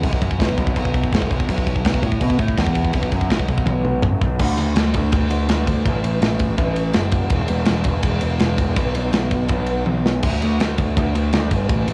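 Heavy metal in B minor at 165 BPM, heavy and epic, carried by a bright, punchy fuzz bass with overdrive and a modern drum kit with a tight kick, both up front and playing throughout this short cut from a longer piece. The bass sits low between E1 and B2, while the drums, with a medium-tuned snare, crash, ride, kick and toms, carry a cassette tape character and small room ambience. Drum fills arrive at 3.7 seconds, leading into the second section at 4.4 seconds, and again at 9.9 seconds, all in a dry home cassette recording.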